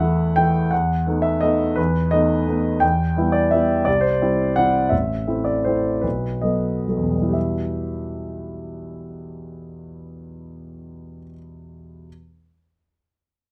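In a rubato 3/4 lilt ranging from 123 to 182 BPM, this nostalgic, elegant classical piano waltz fragment in E minor, tuned to A4 = 438 Hz, features a solo grand piano with a polished, up-front presence spanning A1 to G5, captured dry and close in fine detail as it moves from E minor through C, A minor and B7, broadens between 4.4 and 7.3 seconds, and settles back on E minor at 7.3 seconds.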